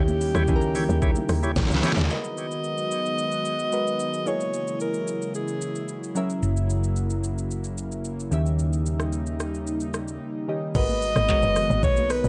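A dark, lightly reverberant amapiano excerpt at 111 BPM in G# minor with a hypnotic, deep mood, where a close-miked alto saxophone with light vibrato and delay carries the melody over glassy, wave-folded digital keys, an airy breathy pad, brief overdriven tonewheel organ stabs on slow rotary, a gritty knocking R&B drum kit and very quiet high-tuned congas, while the woody log drum bass of the opening drop gives way to a round, hollow-body fingered electric bass from 6.4 to 10.2 seconds before the log drum and sax return at 10.8 seconds over chords moving from D#7b9 through G#m9, A#m7b5 and F#7.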